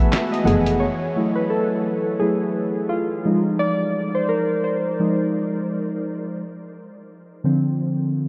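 A gently swung sixteenth-note feel opens this hazy, nostalgic lo-fi hip hop fragment, where a muffled, pitched-down sampler kit of handclaps, hi-hat and snare and a distant, bowed double bass sound only until 0.8 s, after which dark, detuned synth keys with chorus and a low-pass filter carry on alone through F#m9, Fm7 and Dm7, the whole mix soaked in huge reverb and cassette tape haze.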